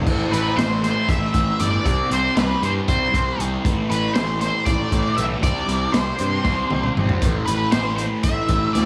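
An up-front octave-fuzz lead guitar carries the melody through wah, distortion and analog delay, its dark, picked tone sitting high over a hypnotic, mysterious psychedelic rock groove in 7/8 at 235 BPM, in A minor and tuned to A4 = 438 Hz. Beneath it a thick, double-tracked fuzz guitar with phaser grinds out the riff over A5, C5 and Csus2 chords, an overdriven picked electric bass adds weight, and a crunchy, saturated breakbeat drum kit with dark cymbals, a tight kick and a rolled-off top rolls into a fill at 6.5 seconds. Light reverb gives the whole passage the feel of a small room, and it is cut from a longer piece.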